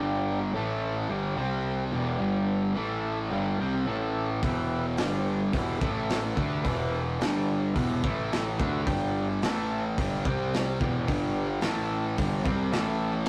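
A bright, double-tracked fuzz guitar leads this menacing, raw garage rock excerpt at 108 BPM, driving a riff through power chords on G, A and C with brief turns to E minor. Beneath it an overdriven fuzz bass growls, while a mellow, clean vintage combo organ holds sustained chords in the background. At 4.4 seconds a crunchy, gritty breakbeat kit with dark cymbals and a tight kick enters up front, all caught in a rough rehearsal-room sound with light reverb and saturation.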